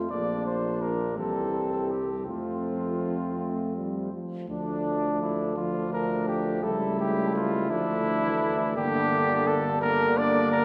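Triumphant and warm, this brass quintet passage in 6/8 moves at a stately 56 dotted-quarter beats per minute, opening in F major before turning to D minor at 4.5 s. A mellow trumpet with light vibrato carries the melody up front, entering at 0.1 s, while a punchy flugelhorn plays the second line. A French horn and a smooth-topped trombone fill the accompaniment above a bright, vintage-toned bass trombone, all set in the lush, wet reverb of a church or concert hall.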